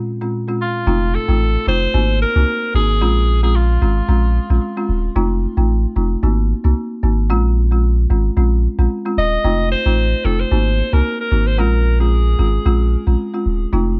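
A deep, punchy sub bass with a pitch-drop attack anchors this smooth, hypnotic afrobeats groove at 112 BPM in Bb minor, cycling through minor and dominant seventh chords with a light sixteenth-note swing, while a woody, dry folk marimba with medium mallets keeps a rustic accompaniment and an edgy alto saxophone with light vibrato sings two pop-style phrases from 0.6 s and 9.2 s, the bass and marimba up front and everything nearly reverb-free under a worn, warbling cassette-tape drift in this section cut from a longer piece.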